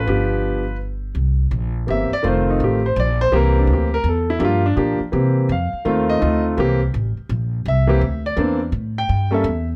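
Playful and warm, this brisk jazz trio cut from a longer piece swings in 3/4 at 166 BPM in C mixolydian, where a natural, deep-toned concert grand piano carries the melody with plate reverb and takes a solo from 1.2 seconds over a progression from G7 through C7 and F7, while a woody, thumpy pizzicato upright bass on gut strings sits up front beneath it in a lightly reverberant room.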